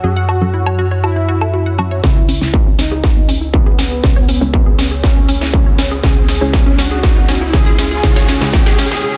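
A dense, heavily limited slice of dark, dramatic melodic techno, where a bold, nasal synth brass melody and a round, detuned analog pluck arpeggio pump over a punchy, funky bass, muted dub chord stabs and a resonant, wave-folded pad in the background, before a distorted kick enters at 2.0 seconds with a cracking-snare drum fill and a riser from 4.7 seconds building the tension.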